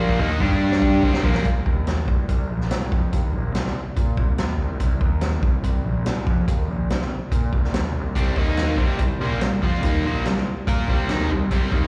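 A straight 4/4 pulse at 143 BPM powers this driving, swaggering classic rock cut, where a vintage acoustic drum kit with a punchy kick and rolled-off top opens on a fill, a bright fuzzed and picked electric bass sits up front throughout, and a biting, double-tracked overdriven guitar riff with slapback echo sounds for the first 1.5 seconds and returns at 8.2 seconds, the whole band heard as a live gig through the venue's PA with small-room ambience and recital-hall reverb.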